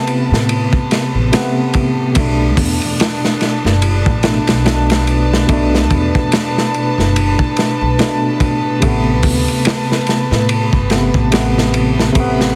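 Over a swung 72 BPM groove in 4/4 from a crunchy, gritty breakbeat kit with dark cymbals and a punchy kick, this melancholic, smoky trip hop piece in A minor sets a worn, slightly out-of-tune tine electric piano with overdrive, harmonic tremolo and tape echo accompanying on Amadd9 and Bm7 chords, a growly, woody pizzicato upright bass with tube saturation entering at 0.3 seconds, and a reedy, bowed string section holding sustained chords above, the mix carrying a heavily compressed radio sound with light reverb and small room ambience.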